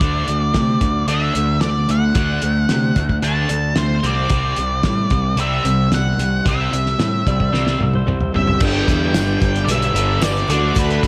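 A big arena sound with moderate recital-hall reverb opens this driving, swaggering classic rock excerpt, a straight 4/4 groove at 112 BPM in D mixolydian, moving from D to C before shifting to G and back to D. A muffled, cloth-damped drum kit with a fat snare, tight kick and dark cymbals thuds beneath an up-front fuzz bass and a bright, double-tracked distorted guitar riff with slapback echo, while a dark octave-fuzz lead guitar carries the melody. A clean lap steel slides in at 7.3 seconds with a short slapback-echoed second line as a drum fill leads into the next section, and a tonewheel organ with rotary speaker and key click begins holding very quiet sustained chords at 8.3 seconds. At 8.6 seconds the arrangement thickens: a crunchy overdriven guitar adds a second riff in the background, and a shimmering twelve-string acoustic and a woody, boxy upright piano add accompaniment. A jingly tambourine joins briefly at 9.1 seconds, tucked in the background before the cut.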